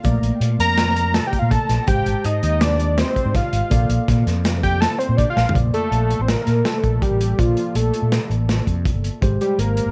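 A driving 5/4 pulse at 164 BPM with a straight feel anchors this intricate progressive instrumental, cut from a longer piece. Up front, a crunchy breakbeat kit with a punchy kick, medium-tuned snare, hi-hat and toms sounds saturated and gritty with a rolled-off top, while a mellow fretless electric bass, round and amped, holds the low end between G1 and Bb2. A clean tine electric piano heard through its built-in speakers supplies accompaniment as the harmony moves from Bbmaj7 to Abmaj7 and back, and a grainy egg shaker sits very quietly in the background until 5.2 seconds. From 0.6 seconds a fat analog lead takes the melody, a detuned sawtooth-and-square voice with a sub octave, fast attack, vibrato and a warbling vintage character, colored by chorus and tape echo. A drum fill at 5.4 seconds ushers in a new section, and the whole sits in light reverb with a dark, softened top end.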